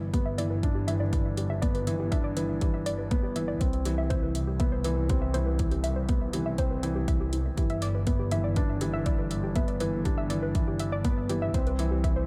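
Hopeful and tender, this short excerpt of piano and strings electronica moves at 121 BPM in G major, with a felt-muted upright piano playing a soft, intimate riff up front with delay, over a veiled, bowed double bass section whose con sordino sound pumps with sidechain. A warbling, lo-fi pluck with a dusty, wave-folded edge spins arpeggios through chorus and delay, while a deep electronic kick sits up front and metallic hi-hats add a tape-warm texture. Chords drift between G6 and Cmaj7 in light reverb and small room ambience.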